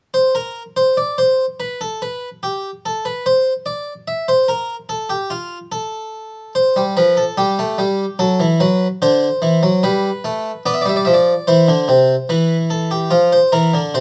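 A classical piece in the baroque style, this two-part invention for solo harpsichord moves with a stately yet joyful character in a straight 4/4 feel, taken from a longer work. The harpsichord plays alone from 0.1 seconds to 14.0 seconds, ranging from C3 up to E5. Its plucked, brilliant tone in the French style carries the ring of octave strings, with a mid-forward voicing that sits up front in the sound. The opening stretch unfolds with the two voices alone before harmony settles in around 6.6 seconds, then moves through a series of chords that arrive on C near 11.5 seconds. A light reverb gives the instrument a touch of air, and the tuning sits slightly below modern concert pitch at A4 = 438 Hz.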